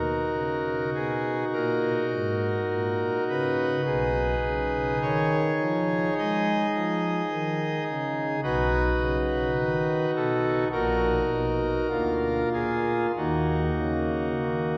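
Grave and dark, this short classical chorale-style passage for pipe organ unfolds in Eb minor at a slow 52 BPM in 4/4, its pulse bending freely with rubato. The organ plays alone throughout, using a cornet solo stop with a nasal, up-front voice and a romantic voicing that spans from Bb1 up to Eb5. The harmony moves from Ebm through Abm/Cb and B, then turns homeward via Ebm/Bb and Bb7/D before settling on Ebm at 13.2 seconds. A wet church reverb with a 3.4-second decay surrounds the instrument, giving the sound of a church or concert hall. The recording is a 14.8-second excerpt cut from a longer piece.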